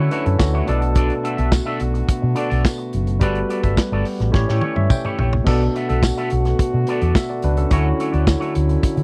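This dry, close recording has a 1970s studio sound with a touch of reverb, and it catches a driving, danceable disco groove at 107 BPM in B minor, cut from a longer piece. A round, dark fingered electric bass and a soul drum kit sit up front. The kit has a tight kick, a medium-tuned snare, dark cymbals and toms, with a rolled-off top. A barky tine electric piano, lightly overdriven through a combo amp, shares the accompaniment with a bright, twangy electric guitar run through an envelope filter and lush chorus. A mellow, distant French horn section holds sustained chords behind them, and a jingly vintage tambourine sits low in the mix from 0.4 seconds. The chords move through Dmaj9, Bm7, Gmaj9 and A7, and at 4.3 seconds a drum fill and an electric piano fill lead into the repeat of the section at 5.5 seconds.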